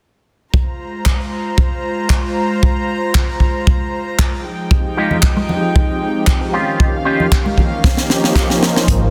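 A tight, up-front kick drum leads this groovy, feel-good nu-disco excerpt from 0.5 s, joined by a dry, polished funk kit of handclaps, hi-hat and high-tuned snare, while a soft-attack, sul tasto string section floats sustained chords with sidechain pumping; a bright, twangy, envelope-filtered guitar riff with chorus and delay arrives at 5.0 s alongside ringing congas played with soft hands, and after a drum fill a fingered electric bass with an envelope filter appears at 8.9 s, set in light studio ambience and a dense, heavily limited modern master.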